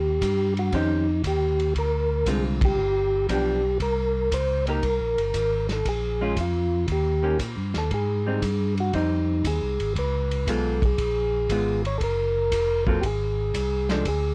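A percussive tonewheel organ opens the excerpt on the melody, its soft, flute-like tone touched by second-harmonic percussion and turning through a slow rotary speaker. A second tonewheel organ carries the bass line from the same moment, fat and clean with vibrato and key click, also up front through slow rotary. This is a greasy, bluesy soul jazz organ trio at 117 BPM in 4/4, swung on the eighths and tuned a shade low to A4 = 438 Hz. A small-room acoustic kit joins at 0.2 seconds with hi-hat, kick, ride and snare, its dark cymbals and tight kick sitting under a rolled-off top. A dark, picked hollow-body electric guitar adds clean accompaniment from 0.7 seconds, and the band hits an accent together at 2.5 seconds. The harmony moves from Eb13 through Abmaj7 and Db7 to a closing Gbmaj9#11, all heard through light reverb and the wavering pitch drift of old, worn cassette tape.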